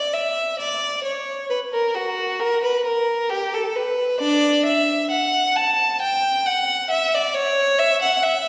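A clear, up-front solo violin opens the music alone, sounding a baroque-style suite movement in a radiant, dance-like 3/4 with a flexible, rubato feel across its 8.5 seconds. The single bowed line is smooth and even, colored by vibrato, and ranges from D4 to A5. A wet recital hall reverb surrounds the instrument, giving it the resonance of a church or concert hall in this short cut from a longer piece.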